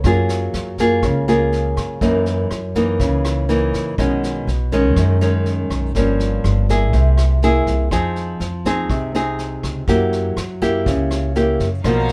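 A straight 4/4 bossa nova groove at 122 BPM is carried by a vintage brush drum kit, its punchy kick, medium-tuned snare and rim clicks heard in a natural studio room. The mood is smooth and melancholic, with the harmony moving from Gbmaj9 and Gb6 through B69, Gm7b5 and C7b13 to Fm7 and Gb7b9. Up front, a small-sounding fingerpicked nylon-string guitar plays the accompaniment, while a woody pizzicato upright bass with steel strings holds the low end. At 11.8 seconds a distant bowed violin section enters with lush, expressive sustained chords and a soft attack, just as this fragment of a longer piece ends. Light reverb and a faint mains hum colour the recording.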